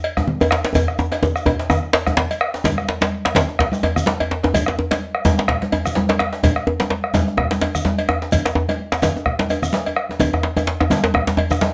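A close, dry djembe played with soft hands sits up front in this festive, driving West African drum ensemble excerpt, alongside a round, roomy bombo and bright, hard-handed congas. Behind them, a second, deeper djembe with metal rattles sounds compressed and saturated, while a metallic cowbell and a grainy, mellow shekere fill out the swung sixteenth-note groove in a moderate studio reverb. A drum fill runs from 0.8 to 2.6 seconds and leads into the second section, which carries the ensemble through to the end.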